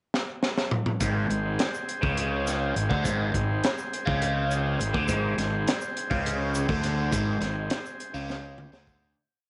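A crunchy, saturated breakbeat drum kit with a high-tuned snare and punchy kick opens this hazy, hypnotic psychedelic rock piece in Ab major with a fill from 0.1 seconds, before a biting, double-tracked overdriven guitar riff with phaser enters at 1.0 seconds, doubled by a round, fuzzy fingered bass playing a syncopated line in 7/8 at 206 BPM, over buzzy vintage combo organ chords with subtle chorus and a grainy tube shaker in the background, all set in a moderate spring reverb with a top end that stops at 11 kHz as the track fades out from 7.1 seconds behind a closing drum fill.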